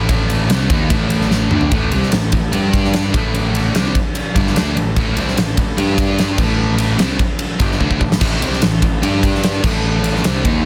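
A sludgy, double-tracked overdriven guitar riff drives this menacing hard rock excerpt at 148 BPM in A minor, alternating between Am and G5 over a huge, up-front arena drum kit with a punchy kick and pumping hall room, drum fills at 1.3 and 7.8 seconds, and a growly picked electric bass sitting in the background beneath a dense, heavily limited modern master with light reverb.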